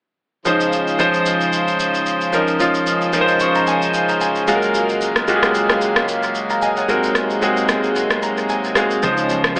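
From 0.5 seconds, a clear, intimate concert grand piano plays relaxed amapiano accompaniment over a reedy, breathing harmonium holding sustained chords, while an electronic shaker and rim click set a gently swung groove. The piano sits up front with a polished, present tone, deep bass, long sustain and audible action noise, and both it and the drums trail dub echo. The piano breaks into fills, first at 3.1 seconds and again later, as the harmony moves through lush ninth chords. At 9.0 seconds a round, punchy fingered electric bass and very quiet, vintage congas and bongos join for the final moments of this excerpt. The echo-heavy mix, moderate spring reverb and AM radio sound give the whole a hazy, mellow glow.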